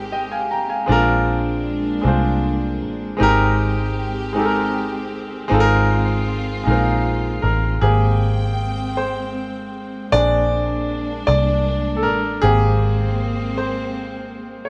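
R&B in a slow 6/8 at 52 BPM in Ab major, this intimate, sensual excerpt from a longer piece rests on chords such as Abmaj9 and Bb9. A clear, polished concert grand piano sits up front with a deep low end and short sustain, backed by a dark, round, foam-muted electric bass and, lower in the mix, a warm bowed string section holding smooth chords with vibrato. The band sounds as if it is playing live together in one room with moderate studio reverb, and the piano takes a solo from 7.8 s to the end.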